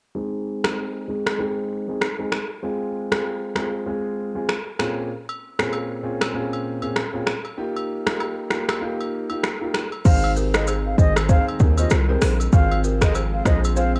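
A sunny, romantic afrobeats excerpt in Ab major at 97 BPM with a swung sixteenth feel opens at 0.2 s on a boxy, tape-worn grand piano under a filter sweep, joined by an overdriven electronic kit of soft kick, smooth hats, snaps, rim clicks and shaker; close, dry agogo bells and woodblock slip in at 5.3 s, and at 10.1 s a punchy, heavy 808 bass arrives alongside a mellow flute melody with vibrato, a very quiet breathy pad and a woody, buzzing balafon riff trailing analog delay in the background, all within a small, lightly reverberant cassette-recorded room.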